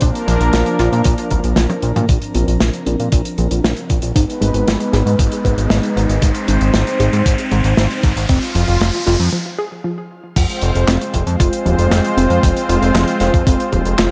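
This nocturnal, cinematic synthwave excerpt at 116 BPM opens at once with a thumpy, overdriven electronic kick, a dark, smooth acoustic kit of snare, hi-hat, handclaps, toms and crash, a fat, detuned analog bass pumping up front, a bold, brassy pad with chorus, vibrato and shimmer reverb, and a lo-fi, warbling pluck arpeggio with delay tucked in the background, and after a drum fill, filter sweeps move across the pad and pluck from 2.1 seconds while an electronic riser runs from 3.6 to 9.3 seconds into a brief break, all moving from Bb through Abm and Ab to Fm in a small, lightly reverberant room.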